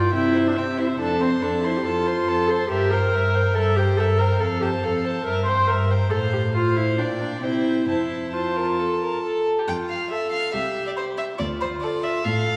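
Heard from further back in a wet scoring stage with a 1.6-second reverb tail, this spirited, lively classical-period string quartet movement in F major moves quickly at 139 BPM in 4/4 with a rubato feel, all four players on period-style gut strings: a nasal, airy-bowed violin carries the melody from C5 to C6, a dark, smooth-topped second violin traces its own line beneath until 12.2 seconds, an up-front viola with light vibrato supplies the accompaniment, and a close, reedy cello anchors the bass through chords from F to C7/G, Gm/Bb and Dm in this excerpt cut from a longer piece.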